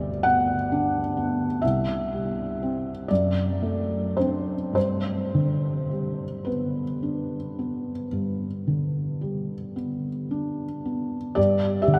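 A vast, echoing cathedral reverb surrounds this short passage, with a long decay hanging behind an upright piano that still sits up front and close. The piano's felt mute gives it a mellow, intimate tone, and the soft mechanical noise of its action remains audible, adding a natural, human touch. It is a classical nocturne in the romantic style for solo piano, unfolding in 12/8 with a free, rubato feel, and the mood is serene and nostalgic. The harmony moves gently from G to C, through D7/F#, and back to G around 4.8 seconds, spanning from deep bass notes up into the middle-high register. Cut from a longer piece, the passage settles onto a G5 chord at 11.4 seconds before the piano's final resonance carries to the 12-second mark.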